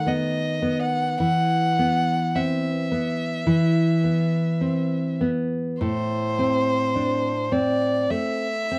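A clear, focused violin, bowed close and up front with vibrato, carries an elegiac melody over a bright, full-bodied nylon-string guitar, fingerpicked with audible finger squeak, in this melancholic romantic duo in A minor at a slow, rubato 52 BPM in 4/4, its harmony moving from B7/D# to E5 at 1.2 s and reaching Am at 5.8 s, all within light reverb and a dark production across a brief 8.8-second passage cut from a longer piece.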